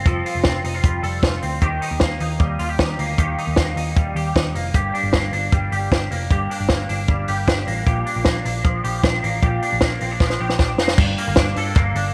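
Lightly reverberant and nostalgic, this breezy jangly indie pop excerpt sets bright, twangy clean electric guitar arpeggios, shimmering with ensemble chorus and tape echo, over a round, punchy foam-muted picked bass and an up-front, dry cocktail drum kit with a high-tuned snare, tight kick and dark cymbals, whose fill at 10.2 seconds leads into a new section where a very quiet, hollow group handclap sounds at 11.4 seconds.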